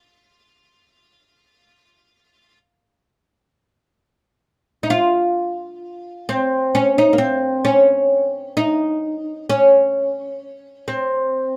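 Turkish makam ensemble music in free time, this melancholic, hypnotic fragment features a lone fretless oud, plucked with a plectrum on its double strings, playing from 0.0 to 11.6 s within a compact range from Bb3 to F4. The oud sounds woody and deep, placed up front with a touch of light reverb. Its tuning sits at A4 = 441 Hz, and the phrase moves into a new section at 3.5 s.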